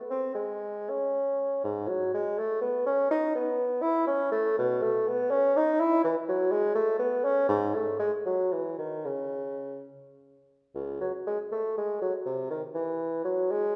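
A dark-toned bassoon plays alone from 0.1 to 13.8 seconds in this short passage cut from a longer piece, a baroque-style classical fantasia for unaccompanied bassoon in C# minor. The mood is flowing and introspective, set in 6/8 with a rubato feel that moves at roughly 66 to 85 beats per minute, counted in dotted quarters. The bassoon ranges from C#2 up to E4, its classical-style tone colored by a light vibrato and sitting up front while still sounding distant and roomy. A wet recital-hall reverb surrounds the instrument, giving the sense of a church or concert hall. At 10.7 seconds the music moves into a new section that carries on until the passage ends.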